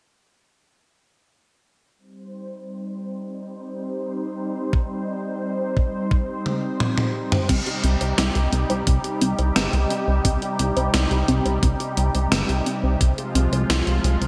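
Synthwave with a cinematic, nostalgic mood, this excerpt opens at 2.0 seconds on a lush, detuned sawtooth pad holding sustained chords, coloured by chorus, phaser and sidechain pumping while a filter sweep moves across it. A thumpy, tape-flavoured electronic kick drum arrives at 4.7 seconds, and a gated 1980s digital drum machine with crash, hi-hat, snare and toms plays a fill into 7.5 seconds, where a dark, glossy chorused synth bass and a soft, round plucked arpeggio in the background enter, the arpeggio carrying delay and its own filter sweep. The bright 1980s-style production sits in a lush hall reverb, with the harmony moving from C minor to F minor near the end.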